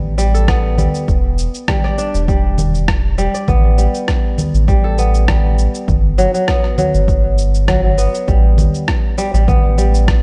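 Warm and earthy, this organic downtempo groove moves at 100 BPM in 4/4 with a gentle 54% swing on the sixteenths, and it is cut from a longer piece. A crisp, ringing kora plays fingerpicked arpeggios between F#3 and D5 from the very start, its notes trailed by delay. Underneath sits a round analog bass, deep and up front with a sine-like, sustained tone, a fast attack, a filter sweep and sidechain pumping. An electronic shaker, rim click and congas arrive at 0.2 seconds with a gritty, overdriven, sampler-style bite, and a punchy, layered electronic kick joins in the background at 0.5 seconds, both set in a small room ambience. The harmony moves from Asus2 to Em7, returns to Asus2, shifts to Gmaj7 and settles back on Asus2, wrapped in a dark production with light reverb and digital ambience.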